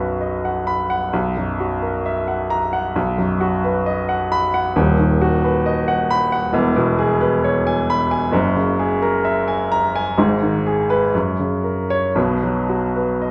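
A polished, warm baby grand piano plays alone through this hopeful, lyrical romantic character piece in B major, unfolding at 56-69 BPM in 2/4 with a supple rubato as the harmony moves from B through F#7/B, C#m7/E and F#9 to a closing B5 at 12.2 seconds, the sound set in a lush large-studio reverb heard from further back in the room across this 13.3-second fragment of a longer work.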